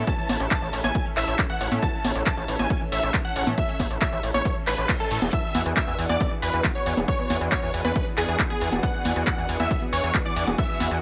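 A dry, up-front mix with little reverb and a rolled-off top end carries this emotional, bittersweet uplifting trance excerpt in straight 4/4, moving from an A chord to E7 at 5.3 s. A huge, euphoric supersaw lead with phaser and tape echo sings the melody over a gritty, aggressive synth bass, joined by a very quiet, round analog pluck on a second line and faint detuned pluck arpeggios, while a thick, airy pad with chorus sits in the background, pumping with the sidechain alongside the bass and lead. A punchy, overdriven electronic kick and a dry analog drum machine of congas, handclaps and hi-hat drive the groove, and a soft reverse cymbal rises from 4.6 s into the chord change.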